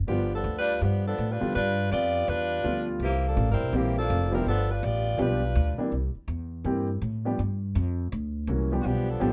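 A swinging 4/4 pulse at 164 BPM drives this joyful, brassy big band jazz fragment in G major, cut from a longer piece, with a woody, pizzicato upright bass carrying the bass line up front. A tight, mellow saxophone section with vibrato and a smooth top states the melody until 5.8 seconds and returns at 8.8 seconds, while an intimate concert grand piano, its action noise audible, comps beneath over G7 and C7 changes. The trio sits close and present in a moderate club reverb.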